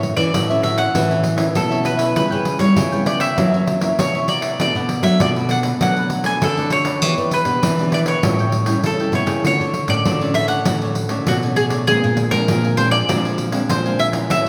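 Samba and choro blend in this sunny, lively excerpt of about 14.5 seconds, set in a straight 4/4. A picked mandolin carries the melody up front, its double strings giving it a round, warm tone. Beneath it, a crisp cavaquinho plays picked accompaniment in the background. A classical nylon-string guitar fingerpicks the chords, while a second nylon-string guitar supplies the bass line with audible finger squeaks. A jingly pandeiro sits up front with a live-room sound, all five parts play throughout, and the harmony moves through A6, C#m7b5, F#7 and Bm7 to Em7, A7, Dmaj7 and Bb9, the ensemble ringing in the generous reverb of a church or recital hall.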